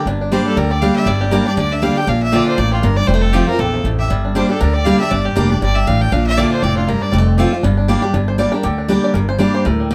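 Swung eighths drive this haunting 238 BPM bluegrass cut in G dorian, where a bright, full-bodied picked acoustic guitar and a woody, thumpy pizzicato upright bass sit up front under a biting, close fiddle with light vibrato that carries the melody from 0.3 to 7.1 seconds alongside a twangy, fingerpicked banjo over Gm, Bb and F chords, and the banjo then takes a solo at 8.1 seconds over Gm, all in light reverb.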